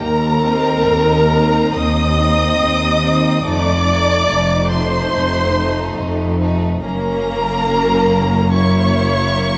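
Set in the moderate reverb of a scoring stage, this tender, serene excerpt from a slow romantic classical movement for string orchestra flows with rubato as a close, expressive violin section carries the high melody over lush, focused violas and dark, intimate cellos with soft attacks, a distant double bass section adds a warm low foundation, and a clear, intense second violin line enters at 0.4 s, all bowed with vibrato through chords moving from Cm7/Eb and F7 toward Gb7.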